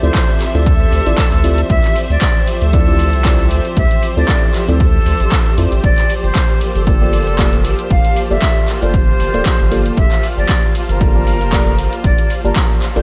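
An airy, distant jazz flute with dub echo carries the melody over vinyl crackle, silky string-machine chords with phaser and ensemble chorus, dark, mellow chord stabs colored by chorus and cassette tape, a round analog bass, handclaps, hi-hat and shaker from a punchy drum machine, a lush bowed string section, and an up-front electronic kick arriving at 0.1 s, in a deep, late-night house groove cut from a longer piece that moves from Dm9 to Gm9 at 5.8 s, with sidechain pumping on the string machine, the stabs and the studio strings.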